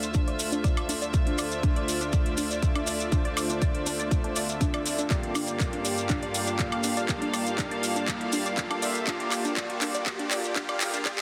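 Progressive house at 121 BPM in straight 4/4, expansive and dreamy, this excerpt is one long build-up over Dm7 moving to Gm7 at 5.1 seconds, with a filter sweep running through the soft, smooth supersaw stabs and the lush, detuned unison pluck arpeggios set in the background, both pumping to the sidechain and trailing delay. A gut-string studio string section holds reedy sustained chords that also pump, while a punchy, tape-warm electronic kick sits up front beside a house kit of handclaps, metallic hi-hats and woodblock plus grainy, close maracas. A very quiet riser enters at 4.7 seconds and a drum fill starts at 5.1 seconds, all within light reverb and a dense, heavily limited master.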